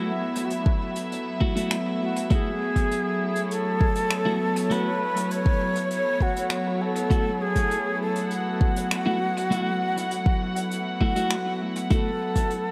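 A breathy, mellow concert flute carries the melody up front, its soft-attack, slightly unsteady vibrato phrases trailing into dub echo over a lone F#m7 chord in this meditative, spacious ambient dub excerpt at 100 BPM in 4/4, F# minor. A bowed string section holds sustained chords with a reedy, gut-string period tone roughened by vintage 12-bit sampler grit, while a twangy, compressed clean electric guitar drops echoed stabs in the background. A deep, layered electronic kick enters at 0.7 s and sits forward, with a distant brush kit of finger snaps and hi-hat echoing behind it, and the whole piece is set in moderate concert hall reverb.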